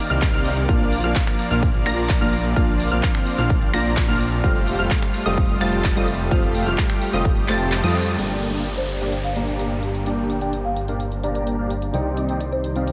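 A lush, chorused pad pumping under sidechain opens this euphoric, anthemic festival progressive house drop, joined at once by a huge, thick compressed supersaw riff with tape echo and a low-pass filter, a menacing saturated detuned saw bass, punchy unison pluck arpeggios, a big-room kit of crash, finger snaps, handclaps and hi-hat, a punchy up-front electronic kick, and soon a dark, worn grand piano in the background, all washed in dreamy reverb until the kick stops at 7.3 seconds and a downlifter ushers in a new section at 8.2 seconds, where a woody, rustic marimba melody enters at 8.8 seconds.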